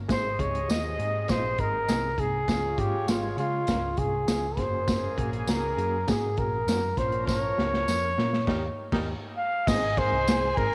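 A round, dark hollow-body electric bass opens this uptempo 1960s-style soul excerpt at 100 BPM in Ab major, joined almost at once by the band in a danceable, uplifting groove. Up front, a breathy, intimate trumpet carries the melody with a soft attack and a whispered, jazz-style tone. A mellow, distant horn section adds a second line with light vibrato, while an overdriven reed electric piano sits in the background, gritty through a combo amp with a fast tremolo. The crunchy breakbeat kit has a saturated, rolled-off top, a tight kick and dark cymbals, and a close, jingly tambourine rides along beside it. A drum fill from 7.3 seconds and a band accent at 8.5 seconds lead the chords from Ab through Db, Gbadd9, Bbm and Eb back to Ab. At 9.7 seconds a dark, woody, bowed studio violin section enters with vibrato for a new section, all set in a small room with light reverb.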